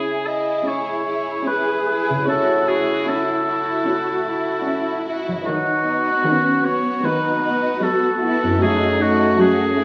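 A tender, uplifting cinematic film score for orchestra, cut from a longer piece, moves at an unhurried rubato as a clear, lightly vibrato oboe sings a second line above a lush bowed violin section, with a close viola section filling in the accompaniment and a mellow concert harp ringing out thumb-plucked arpeggios. At 0.7 seconds a dark, woody cello section enters on the bass, grounding the chords as they drift from C#m through A6/C# and B/D# to a final F#madd9. The oboe sits distant and roomy, while the whole recording rests on a moderate scoring stage reverb and carries the warble and pitch drift of worn cassette tape in a small room ambience.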